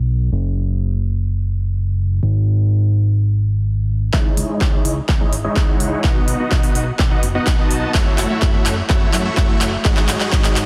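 A straight 4/4 pulse at 126 BPM drives this euphoric, emotional festival progressive house cut in C# minor. It opens with a fat, nasal analog bass pumping under sidechain on its own until 4.1 seconds, when the build-up begins: a huge, bright detuned supersaw lead enters with dub echo and a filter sweep, a punchy layered electronic kick sits up front until 10.4 seconds, and an overdriven big-room kit adds crisp hi-hats and handclaps in a drum fill. Chords move from C#madd9 through B and F#m7 to G#5 under a dense, heavily limited master with light reverb.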